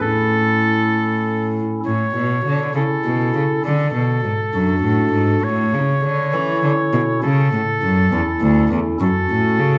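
A warm oboe with light vibrato and a soft attack sings the melody up front in this grave, solemn baroque-style sonata movement in A major at 67 BPM in 6/8, supported by a rich, reedy gut-string cello bass bowed by a single player and a hollow, mellow stopped-flute pipe organ continuo with audible chiff, moving from A through D to F#m in a reverberant recital hall.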